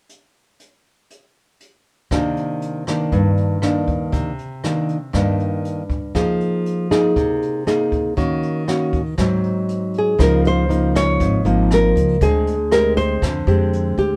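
Wistful and melancholic, this bossa nova excerpt in C minor moves at 119 BPM in a straight 4/4 feel, cut from a longer piece. A jazz brush drum kit opens alone, its hi-hat, rim click and punchy kick sounding distant and roomy with a rolled-off top. At 2.1 seconds a thumb-plucked nylon-string guitar enters with classical-toned accompaniment, moving through Cm9, Fm7, Ebm7 and Ab7. At 10.0 seconds a second nylon-string guitar takes the melody up front, its finger squeaks audible, and at 10.2 seconds a woody pizzicato upright bass on steel strings joins beneath it as the harmony shifts to Db69 and a rootless Bb13/D. The band plays live in one room with light reverb, the guitars and bass close and present against the softer, more remote drums.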